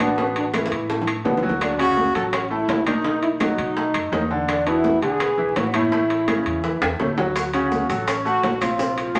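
Salsa at 167 BPM in D major, sunny and joyful, with a mellow, punchy horn section carrying the melody up front over a brilliant grand piano with audible action noise, a woody pizzicato upright bass, ringing metal-shell timbales, distant thin-skinned congas, tight saturated bongos entering at 0.2 seconds, very quiet dry claves and grainy maracas arriving at 7.4 seconds, all set in a wet studio reverb with vinyl crackle, moving from Asus2 through Dmaj7, B7 and E7 with drum fills at 0.5 and 6.8 seconds in this short excerpt cut from a longer piece.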